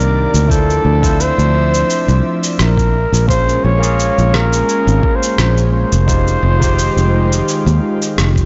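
A veiled, bucket-muted trumpet carries the jazz-style melody up front with vibrato and a soft attack, its tape echo drifting over a wistful sunset chillout groove at 86 BPM with a gentle 16th-note swing. Beneath it, a barky tine electric piano played through a combo amp adds tape-echoed accompaniment, an airy, breathy pad with chorus holds soft chords in the background, and a round, foam-muted fingered electric bass sits up front through shifting minor-ninth chords. Gritty, overdriven sampler-style cabasa and rim click run throughout, joined at 0.5 s by a thumpy electronic kick, all inside a moderate plate reverb and a blown-out, dulled recording that feels cut from a longer piece.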